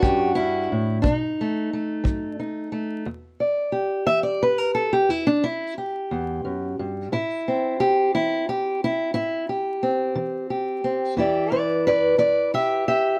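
Moderate studio reverb and a layer of vinyl crackle frame this short passage, cut from a longer acoustic country blues piece. It moves slowly at 59 BPM in a straight 12/8, in E minor and tuned to A4 = 437 Hz, with a mournful, soulful mood. A fingerpicked steel-string parlour guitar sits up front and carries the melody from E2 to E5, its tone dark and boxy, with audible finger squeak. A punchy kick drum, played with brushes in a small room, accompanies it until 2.2 s. From 3.1 s the guitar takes a solo over Em7, Am7 and back to Em7, after an opening that moves from Em7 to B7.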